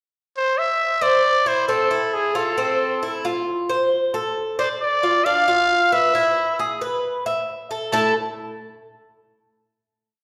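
Latin piece in A harmonic minor at 135 BPM, sultry in mood, where a raspy, growling trumpet enters at 0.4 seconds with a pickup and carries a pop-style, motif-based solo melody built from call phrases, colored by vibrato and scooped notes. From 1.0 seconds a metallic, double-strung Cuban tres adds a picked guajeo of arpeggios, some strings doubled at the octave, over a verse that moves through Am, Fmaj7, Dm and E5 before settling on a closing A5 chord. Both parts sit up front, the trumpet close-miked and gritty, all placed in a wet recital-hall reverb.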